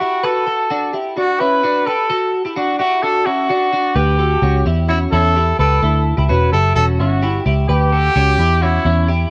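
This home recording on cassette is set in a moderate spring reverb. The piece is a bright, youthful indie pop cut at 129 BPM in 4/4 with a straight feel in D major, taken from a longer piece. A clean, twangy twelve-string electric guitar plays picked arpeggios from the start, compressed and colored by analog chorus and a cassette tape effect. A clear trumpet carries the solo melody in a pop style with light vibrato, sounding distant and roomy. At 4.0 s, where the harmony moves from D to A7, a foam-muted, vintage picked electric bass enters low and punchy, with a dark, round, amped tone.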